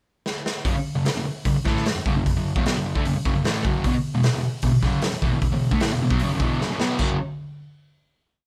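Garage rock at 152 BPM in a swaggering, menacing straight 4/4: a raw acoustic drum kit with a punchy kick, medium-tuned snare and gritty, saturated, rolled-off small-room sound opens with a fill at 0.3 seconds. A double-tracked fuzz guitar then enters at 0.7 seconds with a dark, distorted power-chord riff on E5. Both parts sit up front in a live-in-one-room ambience until the short piece closes on an F#5 chord at 7.0 seconds.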